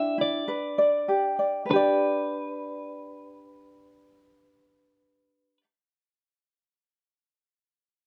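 Heartfelt and carefree, this short pop excerpt pairs a bright, thumb-plucked ukulele, light and up front, with a clean, picked electric guitar melody that sounds warm and compressed, the two playing together in a moderately reverberant room with a gentle swing on the sixteenths.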